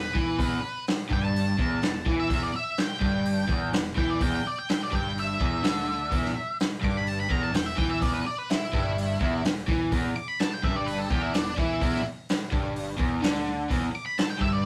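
Gritty and heavy, this short cut from a longer blues rock power trio and southern rock piece in E minor drives along at 126 BPM in a straight 4/4, with a dark, picked octave-fuzz lead guitar soloing up front from D4 to D6 over a bright, double-tracked crunchy overdriven guitar riff, a growly fingered electric bass sitting in the background, and a vintage acoustic drum kit with a tight kick, medium-tuned snare and hi-hat, all captured in a rough rehearsal-room recording with moderate small room ambience.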